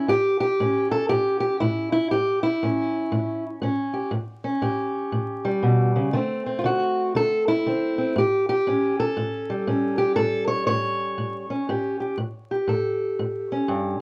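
A loping swung 4/4 at 119 BPM carries this laid-back, swaggering acoustic country blues excerpt in A mixolydian, where a lone fingerpicked steel-string parlour guitar, dark and boxy and up front, moves from A7 to D7 at 6.1 seconds and back to A7 at 8.2 seconds, all wrapped in moderate studio reverb, worn warbling cassette tape with drifting pitch, and vinyl crackle.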